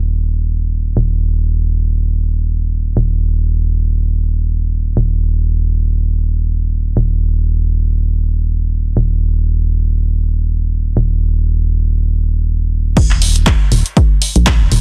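The recording is dense and heavily limited, with a dry sound carrying little reverb, and this deep house excerpt moves in free time with a sunny mood. For the first 13.0 seconds, an organ-like FM bass plays alone, sitting up front in the low register between Eb1 and Bb1. Its tone is hollow and dark, with a fast, percussive attack that then decays, and sidechain pumping gives it a breathing motion. At 13.0 seconds the drop arrives, bringing in a punchy, overdriven electronic kick drum that sits up front. An analog drum machine joins at the same moment with crash cymbal, handclaps and hi-hat, dirtied by overdrive and gritty vintage 12-bit sampler character. The kick stops at 14.6 seconds, while the bass and drum machine carry on to the end.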